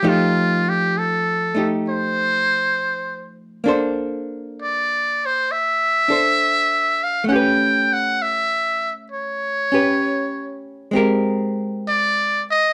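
Jazz ballad at a slow 66 BPM in 4/4, with a swung feel on the eighth notes and a tender, intimate mood, heard here as a short extract from a longer piece. A trumpet with a metal mute carries the melody throughout, its tone buzzy and thin yet brilliant, with a light vibrato in a clear jazz style, sitting up front as the solo voice. Beneath it, a miked and amplified archtop guitar plays accompaniment for the full 12.7 seconds, sounding dark, clean and picked, with the hollow character of a hollow-body electric, also placed up front. The harmony moves through rich extended chords, from F9 to Bbmaj9, then A9 and Abmaj9. A moderate studio ambience gives the pair a close, natural room sound.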